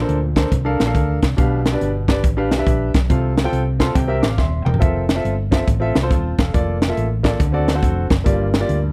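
A dry, close-sounding excerpt of uplifting, hopeful uptempo gospel in F major at 140 BPM with a swung feel, where a natural, up-front baby grand piano comps through rich seventh chords over a dark, round hollow-body electric bass, while a crisp fusion kit with a high-tuned snare and punchy kick drives the groove, and a piano fill from 3.5 seconds meets a short drum fill at 4.4 seconds.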